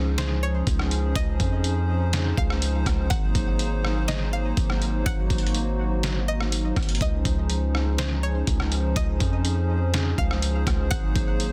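A dry, dense and heavily limited mix frames this short cut from a longer atmospheric cloud-rap piece, floating and dreamy in Db major at 123 BPM with a half-time 4/4 feel, moving between Dbmaj9 and Ab9. A hollow, flute-like pad holds sustained chords with chorus, tremolo and sidechain pumping, while a deep, sine-toned 808-style bass sits up front and a twangy, string-like resonator pluck carries the melody through chorus, phaser and tape echo. From 0.2 seconds a gritty, pitched-down trip hop sampler-style kit joins with a thumpy kick, medium-tuned snare, rim click and hi-hat.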